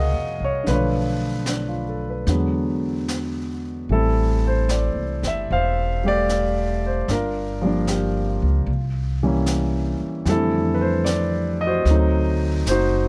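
This late-night, intimate jazz ballad moves at an unhurried 75 BPM in 4/4, with a gentle swing on the eighth notes, and is cut from a longer piece. A clear concert grand piano plays the accompaniment from the start, its deep low register and natural tone sitting up front, while a woody pizzicato upright bass on steel strings anchors the low end beside it. A jazz kit played with brushes enters at 0.7 seconds, keeping well in the background with brushed snare, a high-tuned snare drum and hi-hat that sound acoustic and small-roomed. The harmony drifts through rich extended chords, opening on Gbmaj9 and passing through Bm7b5, E7, Am7, Gm7, C7b9 and Fmaj13 before reaching D7b9 near the end. Close, detailed microphones and little reverb make the trio feel as if it were playing just a few feet away.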